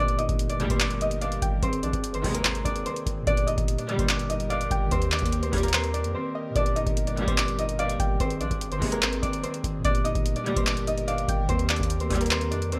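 Hip hop and trap at 146 BPM in a half-time feel, this dark, eerie excerpt in G phrygian moves between Gm and Eb, with a brief break near 6.1 seconds. An up-front, thumb-plucked concert harp carries the ringing, filtered melody over an overdriven analog drum machine with a deep kick, metallic hi-hats and handclaps, while a long, sine-like 808-style bass decays beneath. A soft, round pluck with chorus and delay adds a second line, and a mellow tine electric piano, an airy, warbling pad and a bowed, floating string section playing delayed stabs sit in the background of a bright 1980s-style digital production with light reverb.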